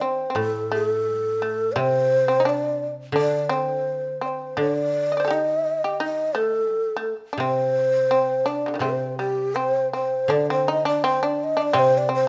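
Japanese traditional chamber music, meditative and austere, moves in a rubato 2/4 around 78-88 BPM in a C kumoi mode, cut from a longer piece. A breathy, hollow shakuhachi carries the melody up front with vibrato and a tongued chiff, while a bright, buzzing fretless shamisen plucks a percussive second line and a woody koto played with fingerpicks gives low, dry accompaniment. Close, detailed microphones catch the trio in a moderate recital hall, and a new section begins at 10.3 seconds.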